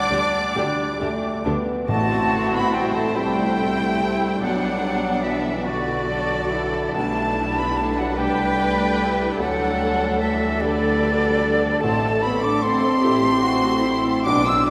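Cinematic, emotional film score in A dorian, moving and longing, drifting at 49 BPM in a rubato 6/8 with uneven beats, where a rich violin section carries the melody above a second, vibrato-laden violin line and an airy silver flute, a clear oboe and a very quiet clarinet sound only in the first 1.4 seconds, mellow French horns hold sustained chords, a soft felt-muted upright piano with audible action noise accompanies alongside focused violas, woody cellos and smooth double basses anchor the bass, round timpani on soft mallets appear from 1.9 to 3.1 seconds, and a wet cathedral reverb fills the space.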